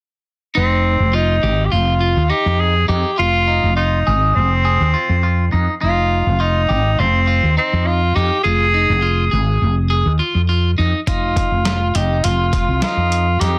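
A clear, up-front tenor saxophone with scooped notes and digital delay carries the melody in this driving, brooding progressive instrumental excerpt in 9/8, over a growly fretless bass drenched in lush chorus, slightly broken-up phaser guitar arpeggios and a sustained Fm7, before a gritty, overdriven sampler-style drum kit with a thumpy kick enters at 11.1 s as the harmony drops out, all in a dry, dense, heavily limited mix.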